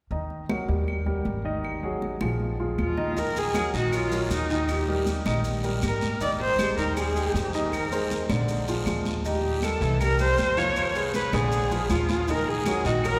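A fiery, driving Afro-Cuban jazz excerpt at 158 BPM opens at 0.1 s with an intimate grand piano up front, its action noise audible, over a dark, thumpy pizzicato upright bass on gut strings and bright, high-tuned congas in the background, with woody claves joining soon after. At 2.8 s a single bowed viola, expressive and distant yet up front, takes the melody with vibrato and portamento, and at 3.2 s raspy guiro and grainy, mellow maracas fill out the percussion as the harmony moves through Ebm, Abmaj7, Fm7 and Bb7. A long cathedral reverb gives the recording the spacious sound of a church or concert hall.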